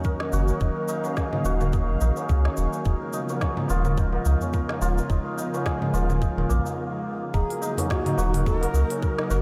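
Shimmering hammered santur arpeggios with analog delay ring through this meditative organic downtempo excerpt in Eb minor at 107 BPM, set over an airy, breathy pad that pumps with the sidechain, a tight up-front electronic kick, a drum kit of congas, crisp hats, shaker and woody snare, a low-tuned ringing tabla and a metallic bronze singing bowl in the background, and a deep round sub bass from 0.3 s, until a brief break at 6.8 s gives way to a hollow, chiffy cedar flute melody with vibrato at 7.3 s, all soaked in a dreamy, huge ambient reverb.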